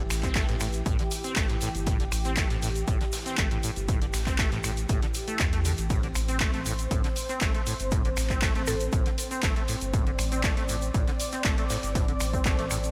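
A punchy, tape-warm electronic kick sits up front in this raw, driving acid house fragment at 119 BPM in A minor, pumping the squelchy, resonant sawtooth acid bass riff with its filter sweep, chorus and delay, and a deep, thick saturated sub bass beneath it on the one A minor chord. An analog drum machine adds finger snaps, handclaps and hi-hat, while a grainy tube shaker sits in the background and a very quiet gated 80s kit contributes airy ride cymbal and medium-tuned snare in a bright stone room. A lush, warbling, detuned unison pad holds sustained chords throughout, and a woody, round FM mallet pluck touches a single A4 at 8.7 seconds, all inside light small-room ambience.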